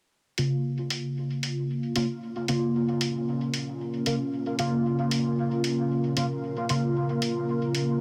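A straight 4/4 pulse at 114 BPM carries this cavernous, nocturnal dub techno cut in Bb minor, taken from a longer piece and resting on a single Bbm chord. From 0.4 seconds a muffled, pitched-down electronic hi-hat ticks along with a sampler-style, tape-toned character, sitting low in the mix. At the same moment a resonant polysynth fires stabs up front, its detuned saw and pulse tones sounding juicy and wave-folded, with a filter sweep, chorus, phaser and dub echo keeping it evolving. At 3.2 seconds a deep, moody ambient pad fades in with slow-attack sustained chords, its detuned unison layers and sub octave softened by chorus and its own reverb. The overall sound has only light reverb but a dense, heavily limited modern master.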